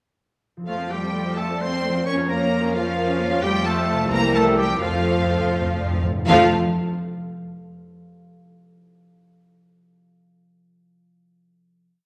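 In a flowing 6/8 at 80-89 dotted-quarter beats per minute, this short, fast romantic movement in F major for symphony orchestra feels graceful, spirited and dramatic, with a lush, vibrato-rich violin section carrying the melody over harp arpeggios from 0.6 seconds, a clear oboe and mellow horns doubling the tune at the octave, and a quiet, close studio violin section and intense violas rocking two-note figures under it. Smooth, distant cellos and double basses anchor the bass, an airy flute ensemble enters at 1.4 seconds with a soft counter-melody and sustained chords, and articulate hard-mallet timpani roll in at 4.8 seconds. The harmony moves from F through Bbm/F and C7 back to F before a final chord rings into the hall's generous reverb.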